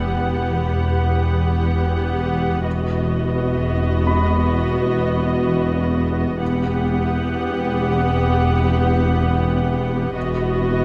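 A dark, veiled wash of muted strings fills a moderate scoring-stage reverb in this uneasy, eerie cinematic fragment at 64 BPM in E harmonic minor, opening on a huge sub drop that ends at 2.7 seconds. Con sordino violins carry a restrained melody with light vibrato and a smooth top, while lush, up-front violas supply the accompaniment. Background cellos and distant, soft-attacked double basses hold the low E beneath a deep, rumbling drone with a phaser, as a clear grand piano adds high, natural texture until 10.2 seconds over chords moving between Emadd9 and B/E.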